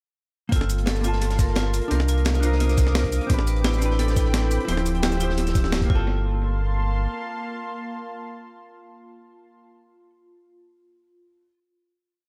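An echo-heavy mix soaks this short, lush and dreamy liquid drum and bass piece in studio reverb, moving at 173 BPM in G minor. From 0.5 seconds, a gritty, compressed, sampler-style electronic kick thumps out a two-step pattern beside a rolling breakbeat kit of cabasa, closed hi-hat and medium-tuned snares, while a second, crunchy breakbeat plays a looped break with edits in the background, dark, saturated and rolled-off at the top. Underneath, a deep, full sub bass with an octave layer sits up front, sliding through long gliding notes. A clean, picked hollow-body jazz guitar plays rootless held chords with syncopated pushes through analog delay, and a thick, detuned sawtooth unison pad carries sustained chords, with chorus, vintage 12-bit sampler grit and sidechain pumping. Over the Gm11, Cm11, Am11 and Dm11 changes, a bright, close-miked vibraphone struck with hard mallets rings through a six-step arpeggio loop that drifts against the bar, its medium motor vibrato trailing into dub echo. 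The drop gives way to a final hit at 6.1 seconds, and the guitar and pad hang on, the pad until 9.6 seconds and the guitar until 10.1 seconds.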